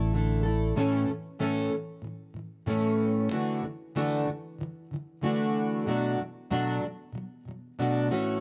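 The recording sits in a moderate small room, and this short pop excerpt carries a sunny, carefree mood at 94 BPM in straight 4/4. A fingerpicked plugged-in steel-string acoustic guitar plays the accompaniment up front from 0.0 to 8.4 s, its full-bodied jumbo tone double-tracked and dressed in plate reverb. At the very start, a mellow fretless electric bass adds a round, amped note that stops at 0.7 s, while a very quiet, dark grand piano with audible action noise and short, vintage sustain is heard only until 0.8 s. From there the guitar carries the piece alone. The harmony moves from Asus4 to A, then Dadd9 and Bm7, giving the brief passage an open, easygoing glow.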